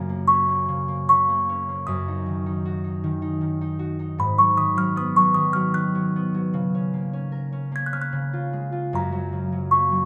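A delicate, tinkling music box carries the melody up front from the start, its small, slightly out-of-tune voice set over a ringing, fingerpicked concert harp in this gentle, innocent children's lullaby in F# major, swaying in 3/4 at 77 BPM under light reverb as the harmony moves from F# through G#m7 and C# before settling back on F#.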